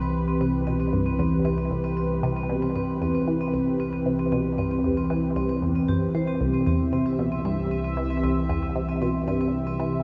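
Bathed in a wet cathedral reverb that opens into a vast, echoing space, this expansive, luminous ambient excerpt in C major at 115 BPM layers a bright, evolving sawtooth pad with chorus sustaining chords up front, a dark, metallic vibraphone with medium hard mallets and slow motor vibrato rippling arpeggios through delay, a squelchy, resonant blip pluck riffing low through phaser and delay, and a nasal analog drone holding C2 underneath.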